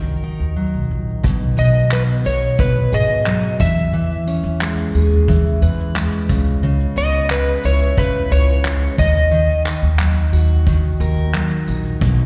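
Acoustic pop with a heartfelt, easy-going feel, heard as a live gig through the venue's PA in a recital-hall reverb, in which a dark, slightly broken-up electric slide guitar carries the melody with slapback echo until 9.6 s over a full-bodied picked jumbo steel-string acoustic and a woody, thumpy gut-string upright bass, while a vintage brush kit with a punchy kick, handclaps and tambourine enters at 1.2 s alongside a grainy tube shaker tucked in the background.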